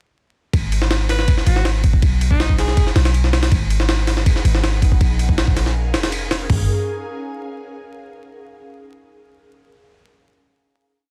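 Raw and nostalgic, this brief drum and bass piece in the jungle vein opens straight into a drop at 0.5 seconds and holds it until a final chord rings out at 6.5 seconds. A heavily chopped, sampler-style breakbeat sits up front, pitched up, compressed and overdriven into a gritty crunch, with a thumpy kick, a high-tuned snare, hi-hat, ride cymbal and toms in a small room ambience. Beneath it, a deep, boomy 808-style bass with a sine body, a noise layer and tube saturation carries a dub-style line, each note striking fast and decaying into a mellow tail. An edgy, raspy alto saxophone, close-miked and soaked in dub echo, enters at 1.1 seconds with short answering phrases in a pop-style solo, sitting lower in the mix than the drums and bass. The track is a dense, heavily limited modern master dusted with vinyl crackle and digital ambience.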